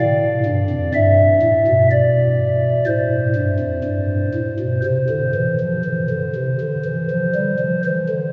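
A cavernous cathedral reverb, lingering for nearly seven seconds, surrounds this brief classical chorale, heard from further back in the room. A single pipe organ voiced on a stopped flute carries the whole passage alone from 0.0 to 8.3 s, its soft, hollow tone spanning F2 to E5 and sitting up front within that resonant space. The baroque voicing keeps the sound mellow, and a chiff marks the onset of each pipe's speech. At a stately 59-63 BPM in straight 4/4 and C major, the harmony moves from Dm to G, then F/A and G before settling on C at 4.8 s. The mood is majestic yet serene, a calm moment cut from a longer piece.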